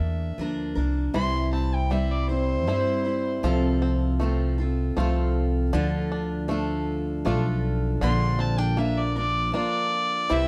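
In a straight 3/4, this gentle, warm acoustic folk piece is cut from a longer performance, with a nasal, gut-toned bowed fiddle carrying the melody up front over bright picked steel-string guitar and a woody, growly pizzicato upright bass. A twangy, percussive fingerpicked bluegrass banjo adds arpeggios from 1.1 seconds; the fiddle steps away after its opening phrase and returns at 8.0 seconds as the harmony moves through Bb, C, F/C and Dm. A full, reedy accordion with slow beating slips in with sustained chords at 10.3 seconds, all within a dry, close 1970s-style studio sound.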